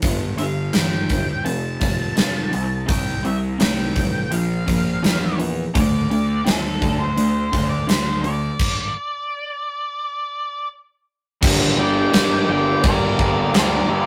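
A straight 4/4 groove at 84 BPM drives this gritty classic rock excerpt in G dorian, anchored by a gated 80s drum kit whose punchy kick, medium-tuned snare, bright cymbals and hi-hat sit up front in a big, airy, polished room. Underneath, a fuzz picked electric bass adds a round, overdriven low end, while a crunchy, bright overdriven guitar with a phaser plays a riff alongside a very quiet, dark semi-hollow guitar that also plays a riff. An octave-fuzz lead guitar, dark and distorted, carries the melody across the G5, F, C5, Bb5 and D5 changes. The band hits a stop from 8.6 s to 11.4 s, then lands on Gm for a new section where a second octave-fuzz lead line joins at 11.8 s. The whole take has a rough rehearsal-room character with tube saturation and moderate reverb, and it feels lifted from a longer piece.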